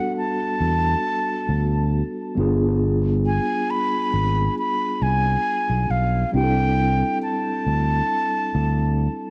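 Contemporary R&B at a slow 68 BPM with a light sixteenth-note swing, moody and sensual, in which a breathy, soft-attacked concert flute carries the melody through cassette-tape grit, plate reverb and analog delay over mellow, clean tine electric piano chords moving from Em11 to G7b9 to C69, while a direct, amped fingered electric bass enters at 0.6 seconds, all up front in a modest room on a home cassette recording cut from a longer piece.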